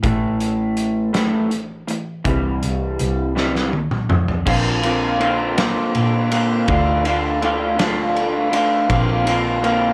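Bittersweet and moody, this short indie rock passage moves at a slow 54 BPM in 6/8, built on a slightly broken-up, lo-fi electric guitar riff, double-tracked and up front, over a bowed double bass with smooth vibrato and a loose acoustic drum kit with a fat snare, punchy kick and dark cymbals. A drum fill from 3.4 to 4.5 seconds leads the chords from A5 and C into Bbadd9 and Dm. A moderate studio reverb and the kit's pumping room sound frame the whole passage.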